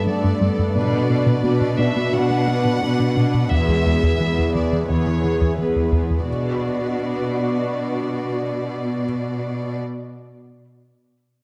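A dark, reverberant recital-hall sound frames this brooding, vast cinematic excerpt in B minor at 87 BPM, where a soft-attack chamber violin section carries the melody over a lush, backgrounded viola section, a chorused analog pad of detuned sustained chords, and a rich, up-front cello section holding the bass. Until about 6.3 seconds, a punchy, wave-folded analog bass riff, ringing harp-like synth pluck arpeggios and a very quiet vintage baby grand with audible action noise add texture. After that the strings and pad continue alone as the harmony settles from E back to B minor.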